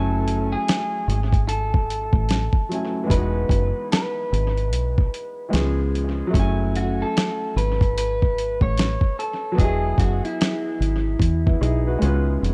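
A slightly broken-up electric guitar through a small old amp carries the melody from the start, picking a compressed line softened by a low-pass filter and analog delay. Beside it are a woody upright piano and a round, foam-muted fingered electric bass. This is reflective, melancholic lo-fi hip hop in 4/4 with a swung sixteenth-note feel, its harmony moving through F#m9, Emaj9 and C#7. Gritty sampler-style drums arrive at 0.3 seconds, sitting up front with a thumpy kick, fat snare and hi-hat, their sound thickened by overdrive. The piano sounds smooth and vintage with short sustain, colored by cassette tape, filtering and delay, while the dark bass stays direct, amped and prominent underneath. A drum fill closes the passage from 12.0 to 12.5 seconds, and the mix is steeped in an echo-heavy digital ambience.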